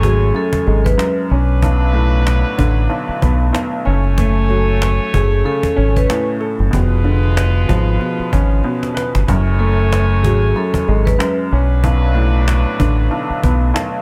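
A ringing vibraphone melody with slapback echo leads this moody, reflective boom-bap hip-hop excerpt at 94 BPM in F# harmonic minor, over a present, tape-tinged upright piano, distant horn stabs with light vibrato, a dark, round dub bass up front and a woody cajon that plays a fill at 8.6 seconds, while the chords move between F#madd9, Bm9 and C#7b9/E# and the vibraphone drops out at 11.3 seconds.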